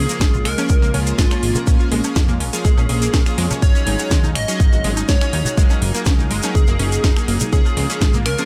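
Bittersweet and dreamy, this short progressive house cut from a longer piece sets a catchy, bright unison lead with dub echo over a lush, very quiet pad, glossy retro polysynth stabs, a funky ring-modulated analog bass with tube saturation, and detuned arpeggio plucks with chorus and dub echo. The stabs, bass and plucks pump against a punchy up-front kick, cracking snare, metallic hats, finger snaps, grainy tube shaker, soft-handed congas and woodblock, and a faint glassy texture of drifting overtones that enters at 0.7 seconds, all in a dry room with little reverb.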